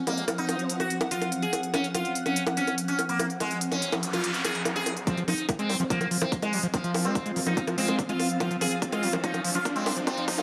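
A buzzing, plectrum-plucked sitar carries the melody up front in this hypnotic, driving psychedelic trance excerpt at 144 BPM in F phrygian, its shimmer treated with phaser and dub echo over a dark, swarming drone and a blurred granular cloud pad in the background, while crisp electronic hi-hat and bongos keep time and a very quiet, wobbling formant-sweep bass surfaces briefly. At 3.8 seconds a noise sweep and riser begins building, and at 5.1 seconds a heavy electronic kick and a squelchy, screaming distorted acid line enter, the acid riff resonant and bright with chorus and tape echo as filter sweeps on the sitar and acid line drive the build-up. A drum fill starts at 8.4 seconds, all set in a moderate plate reverb with a digital ambience.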